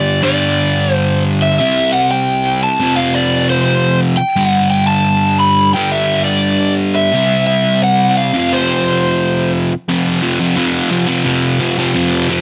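Punk at a rowdy, upbeat 174 BPM in straight 4/4, tuned to A4 = 438 Hz, this clip is cut from a longer piece. A sludgy, double-tracked electric guitar sits up front with a picked, overdriven riff in the low register. A crunchy, picked electric guitar carries the melody above it, with a warm overdriven edge. The harmony cycles through G5, C and F5. The melody guitar drops out at 9.5 s, and the riff guitar plays alone through a new section from 9.9 s to 12.4 s, all under a light reverb.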